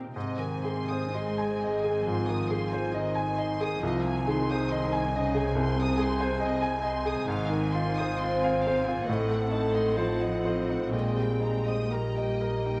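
Captured with close, detailed microphones on a scoring stage with a moderate 1.9-second reverb, this lush, lyrical passage from a romantic movement for piano and orchestra moves at an unhurried 58-72 BPM in 4/4 with a rubato feel. Up front, a baby grand piano carries the melody with a clear, intimate tone, long sustain and audible action noise. Behind it, muted string sections played con sordino form a veiled, dark bed: the cello section and the double bass section hold the bass, the viola section supplies accompaniment, and two violin sections enter at 0.2 s, one playing the melody softly in the background and the other tracing a second line higher up. A mellow French horn section adds sustained chords with a smooth top, while the strings carry a rich vibrato. The harmony begins in Ab major, then turns toward Eb major from 7.3 s, passing through an Fm7/Ab and an Adim7 before settling on Eb/Bb.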